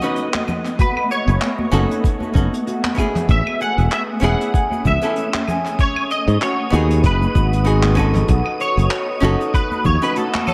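Warm and relaxed, this sunset chillout excerpt sways at 96 BPM in 4/4 with a light swing on the sixteenths, cut from a longer piece and steeped in echo. A bright, clean electric guitar carries the melody through ensemble chorus and dub echo, while a dark, hollow-bodied archtop guitar picks the accompaniment beneath it, also trailing dub echo. Behind them sit a shimmering, ethereal pad holding evolving chords, a mellow concert harp rolling thumb-plucked arpeggios, and, from 4.1 s, a breathy wind-like noise texture hovering high in the background. The rhythm mixes a smooth vintage brush kit with claves, handclaps, hi-hat and shaker, soft-handed congas ringing from 0.3 s, and a gritty, thumpy electronic kick from 0.8 s. A growly fingered electric bass with tube saturation arrives at 1.3 s and sits up front, anchoring the progression that moves from B9 through Amaj7 and G#m7 before returning to B9, all in a small room ambience with light reverb.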